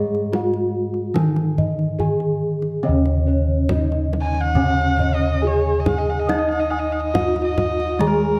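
This Javanese gamelan excerpt in Eb slendro moves at a straight, unhurried 70 BPM in 4/4, with a shimmering, ceremonial mood: bronze metallophones carry the melody and accompaniment, their paired tuning producing ringing, beating tones, while bossed gongs add soft arpeggios above and a dark, smooth bass line beneath. A deep, close kendang enters at 0.1 seconds, a higher metallophone arpeggio line joins at 2.8 seconds, and at 4.2 seconds a single erhu adds an intimate second line with vibrato, portamento and an airy bow. A moderate recital-hall reverb gives the ensemble a gentle halo.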